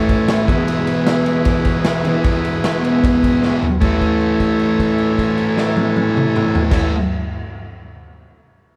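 A straight 4/4 pulse at 153 BPM drives this rowdy, raw garage rock fragment, cut from a longer piece and played by a small band live in one room. The drum kit sits up front with a punchy kick, a medium-tuned snare, toms, crash and ride, its sound saturated and gritty with a rolled-off top and a pumping room character. A thick, double-tracked fuzz guitar, picked and distorted, carries a low riff in A major, also up front. Behind them, a vintage combo organ holds clean, buzzy sustained chords in a higher register as the harmony moves from E to A. A drum fill at 3.4 s leads into a second passage at 3.8 s, where a note is held until 6.7 s, and the band sounds through a wet stone reverb.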